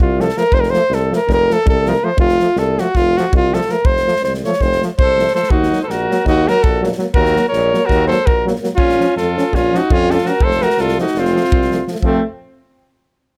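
A close-miked flugelhorn leads this restless, virtuosic Balkan brass band piece in 9/8, which keeps speeding up, carrying a warm melody with plate reverb over a roomy, vibrato-laden tuba bass, a polished acoustic kit of punchy kick and medium-tuned snare, and accompaniment from a punchy trombone and a soft-edged, distant French horn in the background, before a clear, smooth-topped alto saxophone with vibrato adds a second line at 5.0 seconds.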